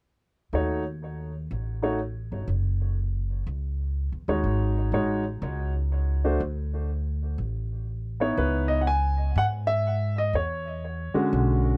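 Jazz with a late-night, moody swing feel, this short excerpt pairs a clear, natural concert grand piano carrying the melody with tape echo against a woody, growly pizzicato upright bass, both up front in a dry, close 1970s-style studio sound, moving through chords like D#m7b5, G#7sus4 and C#m9 before the second section arrives at 8.4 seconds.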